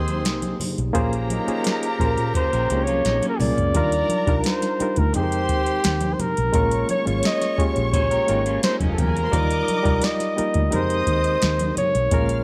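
Set in a small room, this smooth, romantic 1970s-style soul excerpt at 86 BPM in Eb mixolydian features an up-front flugelhorn with light vibrato and scooped notes taking a jazz-style solo through the first 3.7 seconds, over a lush, distant violin section with portamento, a reedy electric piano with overdrive and fast tremolo, mellow horn stabs that stop at 3.4 seconds, a dark, round foam-muted bass, an overdriven analog rhythm box with a deep kick and crisp snare, very quiet congas, and a slightly broken-up electric guitar riff that surfaces twice in the background.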